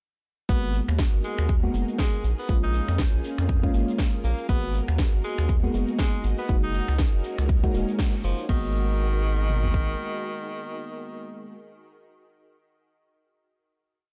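A dry, gritty hardware recording with transformer saturation and digital ambience frames this short, late-night, hypnotic deep house piece at 120 BPM in G# dorian, where a four-on-the-floor kick with toms sits up front beside metallic programmed hats, finger snaps, a cracking snare and crash, a grainy tube shaker in the background, and a round, deep analog bass riff that pumps with the sidechain. A mellow FM electric piano plays dark, close-voiced syncopated stabs through chorus, phaser and analog delay, a silky string machine pad breathes behind them with ensemble chorus, and an edgy, forceful tenor saxophone carries a repeating jazz riff with vibrato through tape echo. The drop runs from 0.5 to 8.5 seconds with a band accent at 8.0, the shaker and drums fall away shortly after, and a final G#m9 chord from 8.5 seconds rings out with saxophone, piano and strings.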